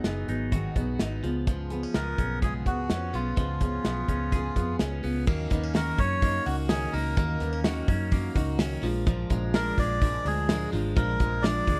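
Wistful and bittersweet, this short excerpt of jangly indie pop moves at 126 BPM in a straight 4/4, set in Eb minor. A full-bodied, jumbo-sized steel-string acoustic guitar picks out the accompaniment while a bright, twangy clean electric guitar, recorded direct and compressed, spins arpeggios colored by phaser and slapback echo. Underneath, a dark, round, foam-muted fingered bass sits alongside an up-front modern studio kit with a punchy kick, medium-tuned snare, hi-hat and crash, ringing in a pumping room sound. At 1.9 seconds a reedy, breathy melodica enters with the melody, nasal and up front, its line touched by slapback echo. The harmony shifts from Abm7 and Db7 to Ebm7 at 5.3 seconds and then Bb7, and the overall mix stays dry with little reverb.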